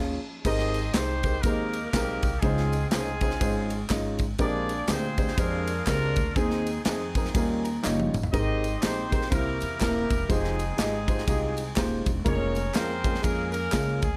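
An up-front, polished modern drum kit with a tight kick drives this jubilant, uplifting uptempo gospel passage in Ab major at 122 BPM, swung in 4/4 and cut from a longer piece. A clear, vintage-flavored horn section carries the melody in octave-doubled ensemble lines with vibrato. Beneath it, an intimate upright piano with audible action noise and a thumpy, gut-strung pizzicato upright bass hold down rich chords, while background tambourine and group handclaps add lift in a small, lightly reverberant room. After an opening band accent, the piano fills at 7.3 seconds and the drums add a fill at 7.8 seconds.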